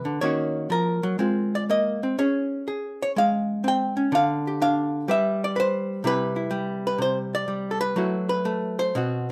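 A dark, clean hollow-body electric jazz guitar sits up front in this short solo jazz passage, cut from a longer piece. Picked alone from 0.0 to 9.3 seconds, it ranges from B2 up to G5 at a swinging 124 BPM in 4/4, with a rubato looseness that keeps the mood playful. The harmony moves through Ebm9, Ab69 and Dbmaj7, then shifts to Dmadd11 and G before settling on Cmaj7 and closing on Am69/F#. A light reverb surrounds the guitar, giving its hollow tone a little air.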